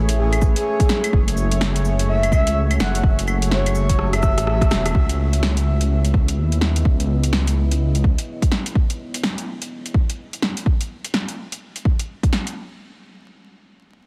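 Melancholic and rainy, this future garage excerpt in C# minor moves at 126 BPM with a 16th-note swing, as a deep, moody sawtooth pad with chorus and reverb pumps under a rumbling, detuned saw bass over Amaj7, F#m9 and C#m9 chords. A soft, breathy flute-like synth lead with vibrato, lush chorus and tape echo carries the melody until 4.8 seconds, where a drum fill and band accent lead into the next section. The overdriven deep house kit of cabasa, claves, metallic hi-hat, rim click and punchy snare, with an up-front electronic kick, keeps playing in a large room after the bass stops near 8.2 seconds and the pad near 8.8 seconds, all within a dense, heavily limited master dusted with vinyl crackle.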